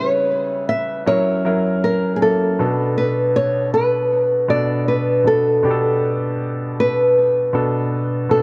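This soul fragment feels cinematic and silky, moving with a gently swung sixteenth-note lilt in common time. A fingerpicked nylon-string guitar carries the melody in a small, dark voice, sitting up front with a tape echo trailing its notes. A warm, natural grand piano plays the accompaniment close beside it, and both parts sound together from the opening through 8.4 seconds. The harmony moves from C#m7b5 to F#7 and settles on Bm7 at 2.6 seconds. A light reverb gives the pair a soft sense of room.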